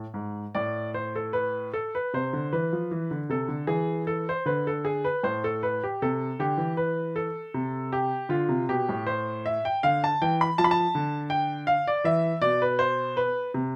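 A bright baby grand piano carries this short, solemn passage alone, its tone brilliant and natural as it sits up front in the mix. The piece is a baroque-style suite movement in triple metre, cut from a longer work, and its rubato feel gives the playing an introspective quality. The harmony moves from A minor through a lush C major thirteenth, returns to A minor and its first inversion, then settles on D minor before arriving on a bare E fifth at 12.0 seconds. The piano spans a generous register, from deep bass notes up into the upper treble. A light reverb lends the instrument a touch of space while keeping the sound close and clear through to the close at 13.8 seconds.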